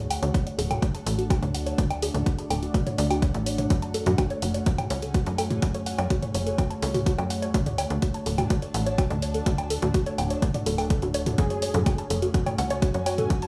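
Melodic techno with a hypnotic, dramatic pull, this excerpt alternates between D and F#madd9 as a punchy, tape-warm kick sits up front beside an overdriven analog drum machine playing hi-hat, toms and woodblock. A tight, nasal sequencer bass drives underneath, while a warbly, lo-fi pluck spins arpeggios through chorus, dub echo and a filter sweep. A deep, moody pad holds sustained chords in the background, a very quiet, breathy pad adds airy texture, and at 11.4 s a thick, detuned unison lead with vibrato enters, trailing dub echo.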